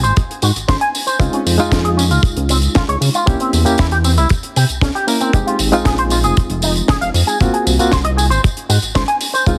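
A glossy, up-front chorused synth bass with tube saturation and sidechain pumping drives this groovy, sleek nu-disco excerpt at 116 BPM, joined by a dry, tight kick from 0.2 seconds, a deep reggae drum kit with a high-tuned snare, hi-hat and tambourine, a clean, twangy electric guitar riff through an envelope filter with lush chorus and analog delay, and, from 1.2 seconds, a reedy, barky electric piano with light overdrive and medium tremolo, all set in a small room under a heavily compressed radio sound as the chords move from Ab through Dbmaj9, C7b9 and Fm7 to Ab13.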